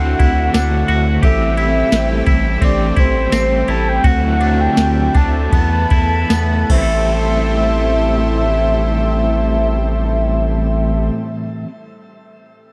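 A tape-warm vintage rhythm box with a deep kick and tonal snare, crash, ride and tambourine pulses up front in straight 4/4 from 0.2 s until it drops out at 6.9 s as the groove gradually slows, anchoring this haunting, ethereal dream pop excerpt alongside a thick, saturated sub bass, while a round, wave-folded octave-layered synth lead with vibrato sings the melody over a raw, double-tracked overdriven garage guitar with tremolo, a lush, airy detuned unison pad holding sustained chords, a twangy, scooped clean electric guitar picking chorused, delayed arpeggios, and a very quiet, bell-like, slightly out-of-tune celesta entering at 1.2 s, all in a dry, dark production.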